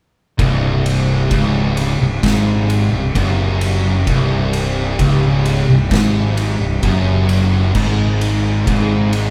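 A slow, straight 4/4 pulse drives this sludgy, brooding stoner and doom metal excerpt, with the whole band entering together at 0.4 seconds and playing through to 9.3 seconds. An oversized, low-tuned acoustic drum kit anchors it with a punchy kick, a fat snare, and crash and ride cymbals, its gritty, saturated sound filling a bright stone room that pumps around the hits. Up front, a fingered electric bass growls with round, overdriven fuzz, while three picked fuzz guitars grind out a low riff behind it: one double-tracked and compressed, the other two dark and thick, with one of those sitting very quiet in the mix. Beneath the heaviness, a very quiet string machine cello patch holds sustained chords, its mellow, slow-attack sawtooth tone thickened by a sub octave and ensemble chorus. The harmony rests on C5 before moving to Ab5 at 7.8 seconds, with the band captured playing live in one room under light reverb.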